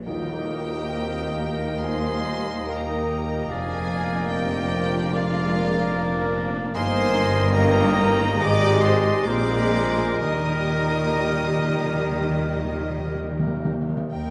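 Classical slow romantic movement for symphony orchestra in Eb major, lyrical and warm at 60-75 BPM with rubato, where a rich, smooth violin section carries the melody over soft sul tasto second violins, pure flute, clear oboe and clarinet lines, very quiet lush violas with portamento, a close-miked bassoon, vintage trumpet stabs, very quiet mellow horn and trombone chords, a ringing fingerpicked harp, and a bass of distant cellos, double basses and tuba, with a very quiet dark tam-tam until 3.5 s and dry timpani returning for a fill from 10.2 s, all in a wet scoring-stage reverb in this short cut from a longer piece.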